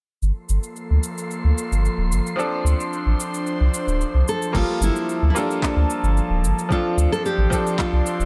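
A round, deep sub bass and a tape-warm R&B kit of cabasa, crash cymbal and handclaps open this relaxed sunset chillout excerpt in G minor at 111 BPM, soon joined by a breathy chorused pad on sustained Gm9 and Dm7 chords and a faint, wind-like tuned noise texture, before a brilliant, worn, sampler-gritty grand piano with tape echo enters at 2.4 s and a full-bodied, fingerpicked nylon-string guitar carries the melody from 4.3 s, its finger squeaks audible over a soft electronic kick in a light digital ambience.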